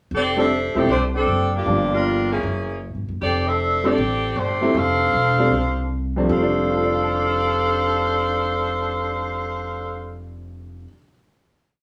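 Recorded live in one room with a wet large-studio reverb, this brief, energetic and joyful big band swing piece in F major at 155 BPM puts a clear, tight, up-front saxophone section, harmonised in four-part block voicing with vibrato on a motif-based melody, over a woody, thumpy pizzicato upright bass in a two-feel and an intimate upright piano whose syncopated rootless comping carries audible action noise, settling onto a final chord at 6.3 seconds.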